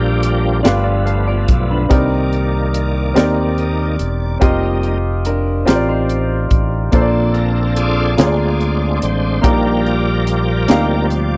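A jubilant, uplifting slow gospel groove in a straight 6/8, this short excerpt is cut from a longer piece and features a bright, shouting tonewheel organ taking the solo throughout, its lightly overdriven chords colored by key click, chorus vibrato and a slowly turning rotary speaker. Alongside it, a clear baby grand piano plays accompaniment while a round, fingered electric bass anchors the low end. A crisp fusion drum kit sits up front with a punchy kick, a high-tuned snare and hi-hat, sounding airy and polished. A twangy, scooped clean electric guitar adds a picked, compressed second line from 0.6 to 6.9 seconds, sitting lower in the mix. The harmony moves through rich extended chords such as Cm9, F9sus4 and Bbmaj7, all captured in a dry, close 1970s-style studio sound.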